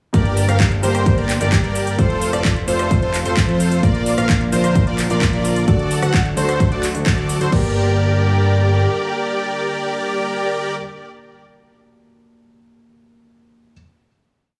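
Festival progressive house at 130 BPM in G minor, emotional and powerful, opening straight into a drop that runs to 7.5 seconds over a Gm, F, Bb, D progression before landing on a final G minor chord that rings to about 11.2 seconds. A punchy, tape-warm electronic kick sits up front in a four-on-the-floor pattern, joined by an overdriven house kit of metallic closed and open hats, shaker, clap, rim and crash, re-recorded in a large room, with both drum parts stopping at 7.6 seconds. A fat, nasal analog bass, saturated and evolving, follows the chord rhythm and carries on to 8.9 seconds, while a huge, compressed supersaw drives dotted-rhythm chords in a drop-2 voicing with vibrato and digital delay. A bold, bright unison lead plays arpeggios in the background with analog chorus, doubling the supersaw, and a very quiet, lush pad with chorus and phaser swells in slowly from 0.8 seconds beneath them. 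Threaded through it all is a soft, felt-muted upright piano with audible action noise and vintage 12-bit sampler grit, playing held, closely voiced chords with syncopated pushes; sidechain pumping breathes through the piano, lead, supersaw and bass, and the piano lingers alone at the close until 13.7 seconds, all set in light reverb.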